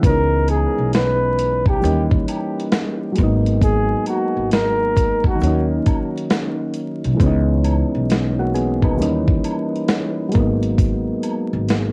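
Swung 16ths at 67 BPM in 4/4 carry this reflective, melancholic lo-fi hip hop excerpt in C# dorian, where a gritty, thumpy sampler-style drum kit sits up front beside soft, round electric-piano-like synth keys with chorus and tape warble, a woody, growly pizzicato upright bass, a distant egg shaker and woodblock in the background, and a breathy, whispered flugelhorn with vibrato and tape echo that sings from 0.1 to 5.7 seconds over moody minor-seventh and ninth chords, all wrapped in the sound of a home cassette recording, vinyl crackle and light reverb.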